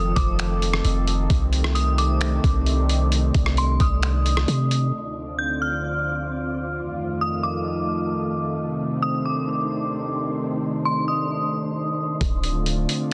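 A half-time 4/4 groove from a muffled, pitched-down lo-fi sampler kit of thumpy kick, hi-hat, rim click, finger snaps and a soft-clipped snare, with a deep, boomy sine 808 bass, anchors this ethereal, spacious cloud-rap excerpt, dropping out near 4.9 seconds and returning at 12.2 seconds, while a smooth sawtooth analog pad with chorus and sidechain pumping and a breathy, wind-like tuned noise layer float through the whole fragment, joined until 12.2 seconds by an eerie, inharmonic FM bell melody treated with phaser and digital delay, all in a dense, heavily limited mix.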